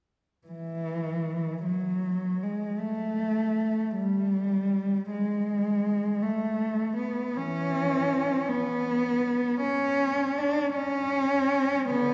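Classical and lyrically serene, this short excerpt of unaccompanied cello drifts at a free, rubato 53 BPM in 6/8 in E mixolydian, a single bowed cello with a warm tone, soft attacks, vibrato and expressive portamento singing between D3 and D4 from 0.5 to 12.1 seconds, its close, up-front voice set in a wet church reverb with a long 3.0-second decay.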